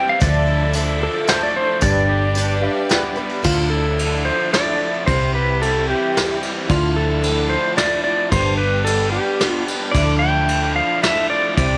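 A twangy, clean lap steel guitar leads this wistful, dusty folk rock and heartland rock excerpt in 3/4, its compressed, slide-played line sitting up front with volume swells through a solo that opens the piece and runs to 3.4 seconds. Beneath it, a dark, round hollow-body short-scale bass and a soft brush drum kit with a punchy kick and rolled-off top hold the foreground, while an overdriven, double-tracked garage guitar plays a raw riff. A shimmering, octave-doubled twelve-string acoustic guitar with ensemble chorus picks its accompaniment in the background, joined by a very quiet reedy electric piano with fast tremolo that adds a short fill from 2.4 to 3.4 seconds. A bright, bowed studio string section holds intense, vibrato-laden sustained chords at a very low level, and a jingly tambourine plays along only until 3.4 seconds. The harmony circles between Dmadd9, G and C under light studio reverb, giving the passage a rootsy, reflective character.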